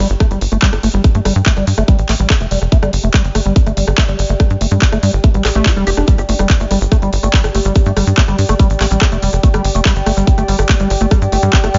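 A squelchy, resonant acid bass riff leads this psychedelic trance excerpt, its smooth square-wave tone treated with phaser and digital delay, pumping with the sidechain and carrying a filter sweep across the whole passage. Beneath it, a tight, punchy sequencer bass of sawtooth and square waves drives forward in the mix, with a fast-attack filter pluck that decays and a moving notch. The layered electronic kick is re-recorded in a small room and sits up front with studio reverb, while an overdriven techno kit adds handclaps, hi-hat and rim click. A warbling, lo-fi pad of detuned square and triangle waves with ring modulation unfolds with a slow attack and long release, bathed in chorus and built-in reverb and also pumping with the sidechain, giving a nostalgic, dark haze. A grainy, bright egg shaker enters in the background at 6.1 s, and the straight 4/4 groove stays alien and hypnotic within a digital ambience.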